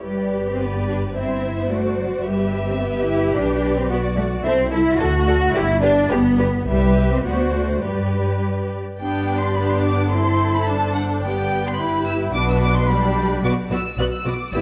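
In a supple, rubato 2/4, this lively, graceful classical-period string orchestra fragment sets a soft-attacked, expressive violin melody over a dark, woody second violin line, a rich, focused viola accompaniment, a smooth, even cello bass and an up-front double bass, every section bowing with vibrato inside a moderate scoring-stage reverb and a dusky, warm production.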